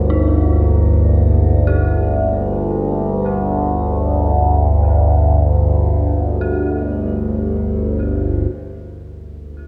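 Vast and ominous, this dark ambient drone in free time, cut from a longer piece, rests on an up-front, resonant overtone-sweeping drone of sawtooth and sine with chorus, phaser and its own reverb, while an eerie, inharmonic synth bell traces background arpeggios through chorus, analog delay and shimmer reverb as it fades out over the first 8.5 seconds, a very quiet bronze singing bowl rings with slow metallic beating until then, and chords move from Eb/G to G5 inside a dreamy mix soaked in lush hall reverb.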